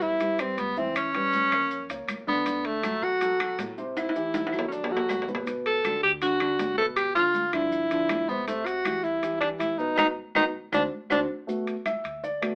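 A straight 4/4 groove at 160 BPM drives this sophisticated, lively Afro-Cuban jazz excerpt, with bright, high-tuned congas, grainy maracas and woody claves in the background, ringing metal-shell timbales close and dry, and a growly pizzicato upright bass underneath. Up front, a warm tenor saxophone with light vibrato and a smooth top carries the melody over a dark, intimate upright piano whose action noise is audible, moving from Em through Gmaj9 and Cmaj7. Drum fills and a band accent lead up to 11.5 seconds, where the saxophone has already stopped at 11.2 seconds and the piano takes a brief solo on a rootless Gmaj7, all heard through a moderate studio reverb with an AM radio character.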